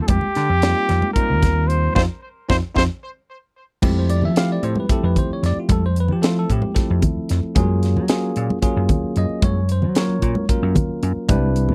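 A straight 7/8 groove at 225 BPM in eighths drives this bright, slick electric jazz fusion excerpt, where a breathy trumpet with light vibrato and tape echo states a brief melody until 2.8 s over bell-like tine electric piano, punchy up-front slap bass, a crisp drum kit with a high-tuned snare, and soft-handed congas in the background, the band landing an accent under a drum fill from 2.0 to 3.8 s before the harmony moves from F9sus4 through Fmaj9 to F#maj9 in a dry, close 1970s-style studio sound.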